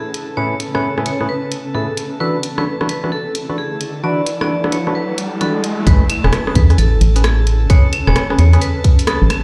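Heard through a big sound system in a bare room with a large studio reverb, this bouncy, soulful excerpt of two-step UK garage swings from the start on a garage kit of claves, rim clicks and warm hats, while a ringing, vintage vibraphone struck with hard mallets carries the melody through a delay above nasal, hollow organ stabs. An airy, breathy pad and a blurred, evolving granular cloud pad both pump against the beat, and an electronic riser builds from 3.2 seconds. At the drop at 5.9 seconds, a dark, up-front FM bass with an organ-like tone and a tight electronic kick take the low end.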